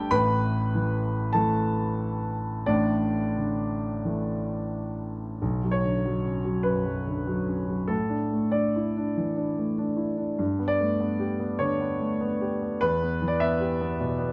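Intimate and wistful, this short excerpt of neoclassical minimalist piano unfolds in B minor with a rubato feel, its pulse drifting between 86 and 101 BPM in 4/4. A single grand piano carries the whole recording from start to finish, spanning from A1 up to B5 with a natural, close-up presence. It opens on a Dsus2 over A before the harmony moves at 5.4 seconds through Bmadd9, Asus4 and Gadd9, settling on E minor at 12.8 seconds. The suspended and added-tone chords leave the progression feeling open and unresolved, suiting its reflective character. Light reverb and a dark, warm production give the sound a soft, enclosing glow, as though heard in a quiet room late at night.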